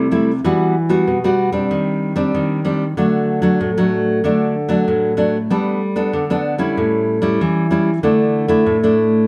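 A lone nylon-string guitar opens this short samba fragment, fingerpicked with a deep classical tone and sitting up front, its range spanning A2 to A4. The mood is nostalgic and yearning, carried at 95 BPM in a straight 4/4 feel. Chords unfold from Emadd9 at 0.4 seconds through Cmadd9/Eb, D and Gadd9 to A7, settling on Dsus2 at 8.0 seconds. Small finger squeaks on the strings add an intimate, human touch to the warm acoustic sound. A moderate, large studio reverb and a dark production give the guitar a soft halo as this 9.3-second passage, cut from a longer piece, comes to a close.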